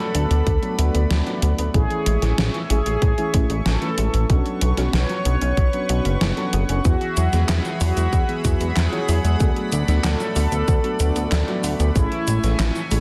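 A dark, brassy synth lead carries the melody from the opening moment, over a shimmering pad that pumps with sidechain and a soft, round pluck arpeggiating in the background through D6, Amaj7, Bmadd9 and Eadd9, while a warbling FM electric piano adds vintage stabs with tremolo and delay, a glossy, tube-saturated synth bass sits up front, a gated 80s drum machine brings overdriven cabasa, handclaps, hi-hat and a gated-reverb snare, and a punchy electronic kick arrives at 0.5 s, driving this nostalgic, cinematic synthwave at a steady 94 BPM under a dense, heavily limited master.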